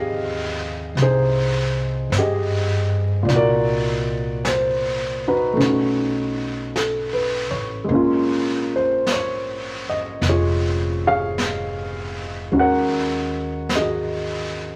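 Swung eighths in a slow 4/4 carry this melancholic, intimate jazz ballad excerpt, where an up-front concert grand piano with a deep bass and short sustain plays accompaniment over chords moving from Fm9 through Cm7b5 and B9 to Bbm7 and Ebm7. Beneath it, a woody, thumpy pizzicato upright bass on gut strings holds the low end, and at 1.0 s a quiet brush kit joins with an airy, polished brushed snare and hi-hat. A wet studio reverb and a layer of vinyl crackle give the small-group sound a hazy, late-night intimacy.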